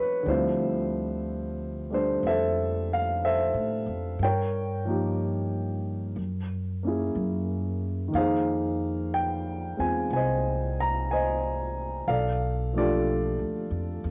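A slow, swung 61 BPM pulse in 4/4 carries this intimate, romantic jazz ballad fragment, where an up-front grand piano with audible action noise and a cassette-tape tint voices chords from Dm9 through Gm7b5, F#9 and Fm7 to Bm7b5, joined at 0.3 seconds by a woody, plucked upright bass, all set in light studio reverb with the soft grain of a home cassette recording.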